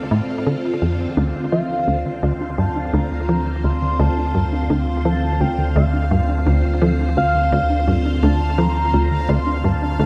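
Bathed in a wet concert-hall reverb, this excerpt of ambient, sequencer-driven space music rests on a single Dm7 chord at 85 BPM in 4/4, feeling expansive and mysterious. A swirling vintage string machine with ensemble chorus and phaser holds sustained chords while a resonant, bubbling stepped-filter texture hovers in the background, and a punchy sawtooth sequencer bass drives a riff from 0.1 seconds. At 1.2 seconds a round sine sub bass and a lo-fi, detuned pluck playing echoing arpeggios join, followed at 1.5 seconds by a shimmering pulse-width lead carrying a mellow, vibrato-tinged melody high above.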